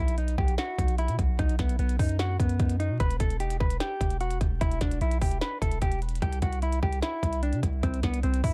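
Hip hop in a trap vein, this short excerpt from a longer piece rides a half-time feel that sounds hard-hitting yet eerie. A dark, clean electric guitar carries the melody from the start, fingered and compressed, with tape echo trailing each note. Underneath, a deep, sine-like 808-style bass holds long sustained tones with a fast attack and a decaying tail, sitting up front in the mix. A minimal electronic drum kit comes in at 0.1 seconds with a tight kick, a tiny snare and clicky hi-hats, recorded again in a small room so it feels close and present. The harmony moves from B5 to E minor at 3.0 seconds and on to C at 6.2 seconds, while the echo-heavy, dry mix carries a layer of vinyl crackle.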